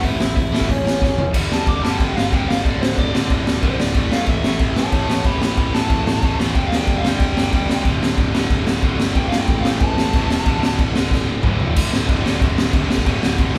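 Punk rock at 184 BPM in a straight 4/4, upbeat and rebellious, cut from a longer piece and played by a band live in one room with light reverb. A raw garage drum kit sits up front, with a punchy kick, a high-tuned snare and dark cymbals across crash, hi-hat and toms, and it throws in fills at 1.0 seconds and again at 11.1 seconds. Underneath, a tight, double-tracked distorted guitar drives the riff through the full 13.6 seconds, while a growly fuzz bass, picked and overdriven, stays in the background. From 1.3 to 11.8 seconds a biting, overdriven lead guitar takes a picked solo reaching up to D6, dropping out at 10.8 seconds. The chords cycle through power chords on G5, D5 and A5.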